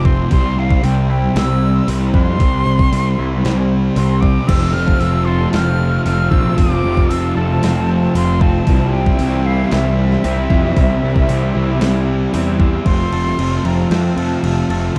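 A hazy, wistful slice of shoegaze-inflected dream pop rock, built on a thick, dark fuzz guitar riff and a growly, up-front fuzz bass, with a thumpy 8-bit drum machine entering at 0.1 seconds. An airy silver flute carries the melody with vibrato and slapback echo, floating over a detuned, morphing wavetable pad and a very quiet, twangy clean guitar playing arpeggios. At 4.5 seconds an overdriven guitar riff with reverse reverb joins in the background, all within a dark production dusted with vinyl crackle.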